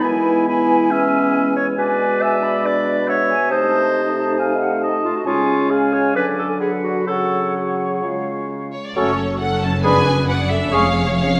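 Urgent and restless, this fast romantic orchestral passage, cut from a longer piece, moves at 136 BPM in 4/4 with a rubato feel. For its first 10.9 seconds the woodwinds and brass carry it: an up-front solo clarinet shares the second lines with an oboe with vibrato and an airy flute section, while a mellow bassoon accompanies and a dark French horn section holds sustained chords. The oboe, clarinet, bassoon and horns sound distant and roomy. Strings arrive near the close, the violin section entering at 8.7 seconds with a lush, expressive melody. Violas, cellos and double basses join at 9.0 seconds, the violas sitting in the background with a rich, even tone and the cellos and basses supplying the bass, and a focused second violin line follows shortly after. The harmony moves from E through diminished and sixth chords toward F-sharp minor within a wet concert hall reverb.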